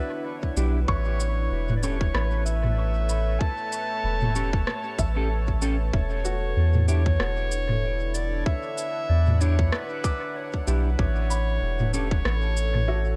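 Over a loosely swung 16th-note groove in 4/4, a tight, tape-colored electronic kick sits up front from 0.4 s, joined at 0.6 s by a small-room electronic kit of rim click, shaker and toms trailing dub echo and a round, soft sub bass. Clean, dark electric guitar stabs wrapped in analog chorus and dub echo hang in the background alongside felt-muted upright piano arpeggios whose intimate tone carries audible action noise and tape echo. A deep, moody pad of detuned sawtooth layers swims in chorus and reverb beneath a present, mellow classical-style clarinet solo with tape echo, moving through Em7, A and E7(no3) in this spacious, hazy ambient dub excerpt.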